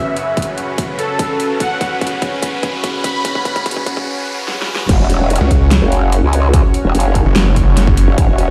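Opening on a smooth supersaw melody under a low-pass filter sweep and dub echo, together with a lush, warbling unison pad with sidechain pumping and an electronic riser, this menacing half-time heavy wobble dubstep piece at 146 BPM builds through drum fills from a layered kit with a huge snare and metallic hats, plus a punchy, tape-warm kick, until the drop at 4.9 seconds, where a bright, formant-filtered growl bass and, from 5.4 seconds, a detuned, snarling distorted saw bass with a moving notch surge up front, all heard as if played on a big sound system in a bare stone room.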